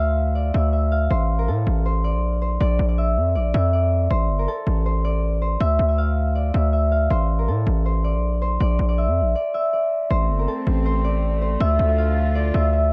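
A thumb-plucked concert harp rings out up front with a tape-echoed melody over a saturated, heavy 808-style bass, setting a menacing, dark trap groove in half-time from the very start. The harp's tone is warm and acoustic, while the bass hits with a fast attack and a gritty noise layer before decaying. After a brief break, a reedy, gut-string chamber section enters at 10.1 seconds with smooth, bowed sustained chords beneath the harp in a small, echo-heavy room, before this excerpt of a longer piece cuts off.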